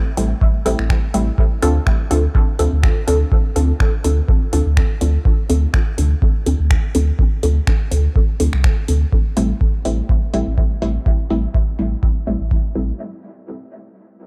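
A dark, cavernous production bathed in digital ambience frames this hypnotic dub techno passage, cut from a longer piece, with a swung 4/4 feel. A muted, detuned sawtooth chord stab, shaped by phaser, dub echo and sidechain pumping, moves from Am7 to Dm7 under a filter sweep until 9.1 seconds, over a round, sine-like sub bass with tube saturation and a deep electronic kick set up front. A booming analog drum machine supplies finger snaps and metallic hats, re-recorded in a large room, and from 9.1 seconds, as the harmony returns to Am7, filter sweeps shift onto the drums and the sub bass.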